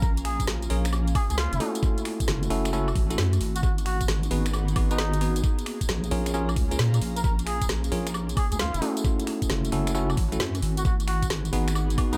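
A deep, wobbling bass with chorus sits up front alongside a knocking electronic kick and a garage kit of finger snaps, metallic hats, woody snare, tambourine and woodblock, swung in a skippy two-step garage groove, while a cup-muted trumpet plays a soulful, veiled jazz-style melody with vibrato and tape echo over a faint, ethereal pad and a breathy, pumping background pad. From 0.7 seconds a bell-like tine electric piano adds clean stabs through analog delay. The whole has an echo-heavy digital ambience, cycling through minor seventh chords in this short excerpt from a longer piece.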